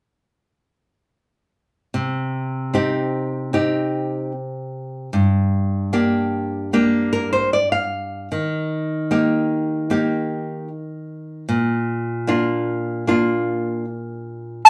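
The large quena stands out most, its airy, woody, end-blown tone arriving up front at 14.7 seconds on a single tongued A5 shaded with expressive vibrato. Before that, this excerpt of an Andean folk piece rests on a fingerpicked nylon-string guitar, played in a classical manner from 1.9 to 14.7 seconds with a bright, full-bodied acoustic sound that also sits close to the listener. The guitar moves through Cm, Gm, Eb and Bb at an unhurried 76 BPM in a straight 4/4, and adds a short fill partway through the passage. A moderately reverberant studio ambience surrounds the band, which plays live together in one room. The mood is wistful yet festive.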